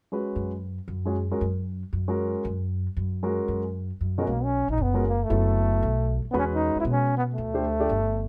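A lightly reverberant, up-front small-group jazz recording cut from a longer piece, swinging and playful at a brisk 231 BPM in 4/4. A dark, mellow concert grand piano with deep bass comps through F#add9, F#m7 and Emaj9 harmonies, while a woody, growly pizzicato upright bass on steel strings plays underneath from 0.4 seconds. At 4.2 seconds a clear, close-miked trombone takes the solo melody with soft attacks, vibrato and scooped notes.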